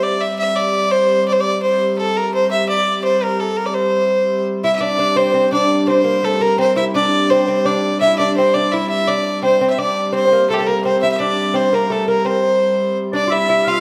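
Medieval dance in 3/4 at 169 BPM, festive and ancient in mood, cut from a longer piece in C mixolydian. A bowed fiddle with a clear, nasal, earthy tone carries the melody up front over a dark, woody hurdy-gurdy drone, while a delicate fingerpicked lute with gut double strings joins on a second line at 4.6 seconds. A vibrato-laden shawm slips in quietly in the background at 13.1 seconds, all set in the lingering reverb of a recital hall.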